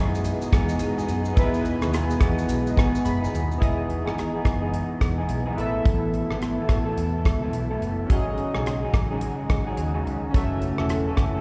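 Dreamy and laid-back, this indie and bedroom pop excerpt moves at 107 BPM in 4/4 with a swung sixteenth-note feel, set in E major. A damped 70s drum kit sits up front with a tight kick, hi-hat, rim click and shaker, while a vintage muted fingered bass adds a round, foam-muted low end. An electric guitar through a small old amp, dark and slightly broken-up with a vibrato effect, shares the accompaniment with glossy, detuned retro synth keys that carry chorus and tremolo, and the keys play a short fill from 2.8 to 3.6 seconds. Behind them, a lush string machine holds slow-attack sustained chords with ensemble chorus in the background. The harmony moves from Emaj7 through Asus2 and G#7sus4 to F#m7, and a 2.0-second scoring stage reverb gives the mix the spacious feel of a church or concert hall.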